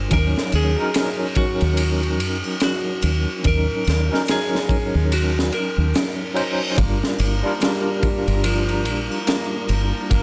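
A crunchy, swung breakbeat of tight kick, high-tuned snare and dark ride at 72 BPM drives this brooding, melancholic trip hop excerpt, where a deep, round fingered dub bass sits up front with tube saturation, a barky tine electric piano with overdrive, tremolo, sampler grit and tape echo carries the chords, and a clean slide lap steel sings the melody through dub echo until 6.7 s, with faint triangle and tube shaker in the background; a reverse cymbal sweeps in at 6.2 s before the harmony moves from Ebm7 to Gm7 at 6.8 s, where a distant, reedy violin section holds sustained chords and a slightly broken-up guitar through a small old amp picks echoing arpeggios, all in a dry, gritty hardware recording with a rolled-off top.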